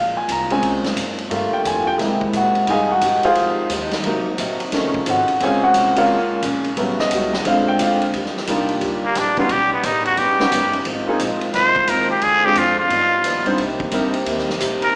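Heard through a small-speaker sound, this energetic, joyful big band swing clip sits in a wet, church-like hall whose reverb lingers about 1.8 seconds. At 176 BPM in 4/4 with a swing feel, a clear, polished grand piano carries the opening solo up front over a drum kit with a punchy kick, a medium-tuned snare, hi-hat and ride. Underneath, a tight trombone section holds sustained chords with light vibrato, while a woody, thumpy pizzicato upright bass sits in the background. A boxy, picked acoustic archtop guitar joins the accompaniment at 2.7 seconds. The harmony moves through chords such as Bbm7 and A13 before the music settles into Eb major at 8.1 seconds, opening a new section for the trumpet with straight mute, which enters at 9.0 seconds. Its solo sits up front with a nasal, raspy, growling voice, a soft attack and a smooth top, moving over Ebmaj7, Ab6 and G7b13 toward Cm7 as the clip is cut off mid-piece.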